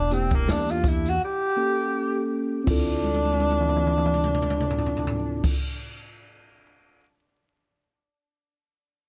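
A breathy tenor saxophone leads this mellow, cool jazz-hop fragment, its whispered subtone, vibrato and scooped notes given a soft halo of tape echo as it carries the melody. Set at 82 BPM in 4/4 with a lazy 16th-note swing in D minor, the phrase moves through Em7b5 and A7b9/Bb before settling on Dm9. Underneath, a woody pizzicato upright bass holds the low end while a mellow tine electric piano, clean and lightly phased, fills in the chords. An open acoustic jazz kit with dark cymbals, a medium-tuned snare and a boomy kick sits up front, carrying the piece through a break from 1.2 to 2.7 s before rolling into a drum fill at 3.0 s. The drums ring on alone until 7.1 s after the other parts stop, all wrapped in small room ambience and a bed of vinyl crackle.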